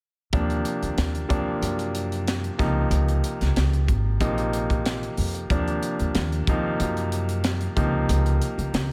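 Piano, upright bass and drums enter together at 0.3 s in this bright, slick electric jazz fusion cut, the brilliant concert grand comping up front with a natural tone and deep low end over chords moving through Ebsus2, D7alt and Dbmaj9. The pizzicato upright bass is woody and growly, with a dark, thumpy steel-string sound, while the punchy kick and high-tuned snare of the crisp fusion kit sit forward in a small, pumping room. The grand piano adds a fill at 8.7 s, just before the cut ends.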